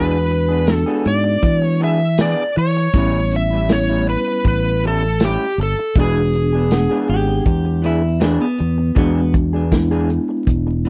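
Straight-eighth soul blues at 80 BPM in 4/4, this short cut from a longer piece has a laid-back, gritty mood, moving from E7 to A7 at 2.9 seconds and back to E7 at 6.0 seconds. An overdriven slide guitar, bright and up front, carries the melody until 7.4 seconds, and a dark, clean picked electric guitar adds a second line from 7.1 to 9.3 seconds. Underneath, a mellow tine electric piano heard through its built-in speakers supplies accompaniment, while an electric guitar through a small old amp adds slightly broken-up, lo-fi stabs. A round, punchy fingered electric bass sits up front, and the soul drum kit enters at 0.3 seconds with hi-hat, tight kick, medium-tuned snare and tambourine, its top rolled off and its sound roomy. Studio reverb and a layer of vinyl crackle give the recording an aged character.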